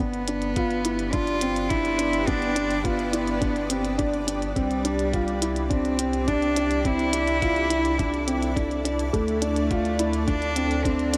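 A straight 4/4 pulse of clicky electronic hi-hats and a muffled, thumpy sampled kick drives this moving, intimate piano-and-strings electronica fragment, where a felt-muted upright piano with audible action noise plays a riff and a close, airy sul tasto cello sings the melody, both touched with delay, over a round sine sub bass and a blurred granular cloud pad that enters at 1.0 seconds, the bass and pad pumping to the sidechain, in a dreamy mix soaked in huge reverb as the chords move from G through Cadd9 to Dm.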